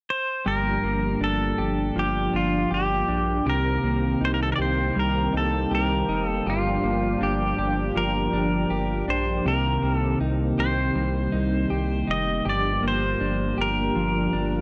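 A straight 4/4 pulse at 80 BPM carries this melancholic, haunting dream pop excerpt in G minor, with the chords moving between Gm7 and Cm7. An up-front pedal steel guitar sounds alone at 0.1 s, playing the melody with fingerpicks, slide and volume swells through analog delay. At 0.5 s a dark, compressed clean electric guitar joins with picked arpeggios under subtle chorus and delay, a smooth, detuned sawtooth pad holds sustained, soft-attack chords in the background, and a deep, thick saturated sub bass anchors the low end, all in a dry, gritty hardware recording.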